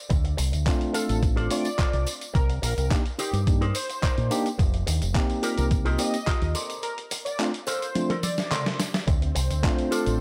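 Sensual and sleek, this nu-disco excerpt rides a thumpy, up-front electronic kick and a gritty, sampler-style soul drum kit of handclaps, hi-hat, snare, tambourine and toms, with a separate acoustic tambourine tucked in the background, under a round, punchy fingered bass pushed through an envelope filter. A twangy, clean electric guitar riff with its own envelope filter and lush chorus shares the space with a bright tine electric piano carrying 12-bit sampler grit and sidechain pumping, while a thick, bold unison lead with vibrato and tape echo sings the melody over chords moving from Dm7 through Cm9, F9sus4 and Bbmaj9. After a break from 6.8 s that includes a drum fill, a warbling, full-bodied unison pad with slow attack arrives at 9.1 s as the harmony returns to Dm7, all in a dry, close mix.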